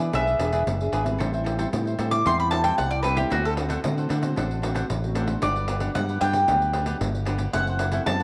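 Nostalgic and bittersweet, this samba and choro passage moves at 114 BPM in a straight 4/4, with a woody, double-strung mandolin carrying the melody up front through a tape echo over a progression that runs from E7 and Am7 through D7 and Gmaj7 to F#m7b5. A crisp, mellow cavaquinho plays alongside a small, thumb-plucked nylon-string guitar with audible finger squeak that sits in the background, while a bright fingered electric bass run through an envelope filter stands up front and a jingly, band-limited pandeiro joins at 0.1 s. A moderate plate reverb gives the whole a gentle sheen, and the music is cut from a longer piece.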